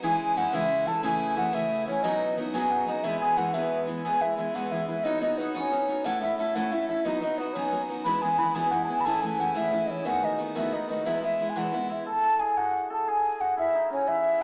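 A mellow, hollow wooden flute carries the melody of this cheerful, lively Celtic jig, its airy straight tone and crisp attack sitting on top of the arrangement. Beneath it, a hammered cimbalom plays a second line with a shimmering, ringing quality. A picked steel-string acoustic guitar provides bright, full-bodied accompaniment spanning from the low register up into the middle range, sitting up front in the sound. The guitar drops out at 12.1 s, where the harmony gives way and the flute and cimbalom carry on together until the cut at 14.4 s. The progression moves through chords such as C#m, A/C#, B and E, with a B7 leading back home. The whole excerpt rings in a wet recital hall reverb and has a small speaker sound.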